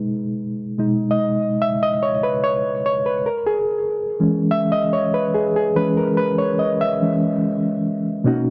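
A reedy, worn electric piano, slightly out of tune yet clean, plays alone and up front through its built-in speakers from 0.0 to 8.5 s in this lush, warm soul fragment at 96 BPM in 4/4 with a light sixteenth-note swing, tuned to A4 = 443 Hz, moving from B6 to E6 at 3.3 s, its harmonic tremolo and tape echo set in a moderate plate reverb within a dark production.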